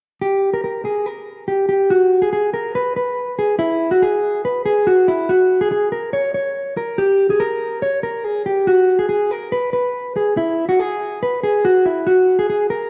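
Bathed in a moderate echo-chamber reverb, this short, bittersweet indie pop passage in G# minor at 142 BPM features a single mellow electric guitar, dark, clean and fingered, sitting up front with a touch of spring reverb as it plays alone from 0.2 to 12.9 seconds, its wistful line moving between E4 and C#5 and shifting into a new section at 1.9 seconds.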